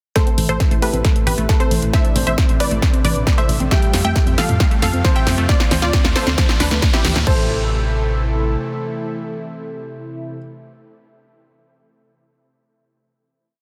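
A punchy, up-front electronic kick drives this soaring, euphoric uplifting trance piece at 135 BPM in A minor, joined by a big-room kit of programmed hats, snare backbeat and crash, and a round, galloping FM bass pumping under a lush detuned sawtooth pluck that carries a repeating riff in thirds and sixths through digital delay. Around it sit a dark, vintage baby grand piano riffing in octaves with tape echo, a very quiet plucky unison lead doubling the anthem, a silky chorused string pad, a very quiet pluck arpeggio looping six steps against the bar under a filter sweep, and a faint riser from 3.0 seconds. The drums and arpeggio drop out around 7.4 seconds, leaving the final A minor chord ringing to the end of a dense, heavily limited mix.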